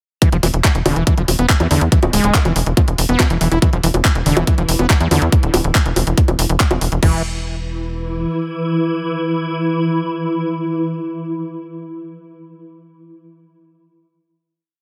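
A driving, psychedelic trance piece at 141 BPM drops straight in at 0.2 s with an overdriven four-on-the-floor electronic kick up front, a programmed garage kit of hi-hats, handclaps, bongos and crash cymbal, and a squelchy, screaming acid line with accents and slides, its distortion, chorus, dub echo and sidechain pumping riding over a tight, nasal sequencer bass that joins at 0.3 s, rolling in sixteenth notes. At 4.2 s a tense, granular drone of detuned sine chords enters with a slow attack, pumping under the sidechain and bathed in its own reverb. The drop ends at 7.0 s, leaving the bass and drone to carry a lingering final note in a light room reverb.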